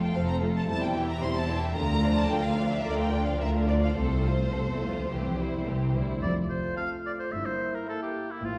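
A wet scoring-stage reverb places this spirited, lively classical-period orchestral passage a little further back in the room, moving at a quick 109 BPM in F major with a straight 4/4 pulse. Lush, expressive violins carry the melody over a second violin line, while a close viola section with portamento fills in the accompaniment and bowed cellos and double basses, both distant, anchor the bass, the cellos smooth and the basses expressive. At 6.2 seconds a punchy, up-front cor anglais enters with its own line as a horn section adds sustained chords, and the violins and violas drop out by 8.3 seconds, leaving the low strings, cor anglais and horns to close this fragment of a longer movement.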